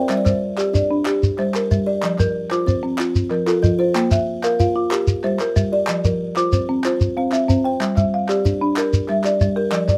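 A straight 12/8 pulse at 125 BPM in dotted quarters drives this trance-like, hypnotic extract of southern African traditional music in G dorian, tuned to A4 = 442 Hz. A woody, up-front folk marimba played with medium mallets and a dry, buzzing kalimba with a plucked thumb attack weave interlocking mbira-style arpeggios through the whole passage, moving over Gm, F, Bb5 and C before a new section begins at 7.8 s. A grainy, mellow shekere and crisp, human group handclaps enter at 0.1 s, all set in a small, moderately reverberant room.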